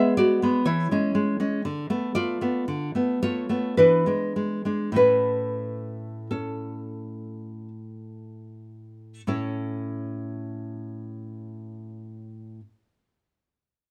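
In a rubato three-beat pulse that slows from 0.2 to 9.3 seconds, a solo nylon-string guitar sings a tender, sunny romantic classical piece, fingerpicked up front with a woody tone and the warm character of old strings. The harmony moves through a half-diminished chord and E7 before settling on A at 5.0 seconds, and a new section begins at 9.3 seconds. The guitar falls silent at 12.6 seconds, with a light reverb around it in this passage cut from a longer work.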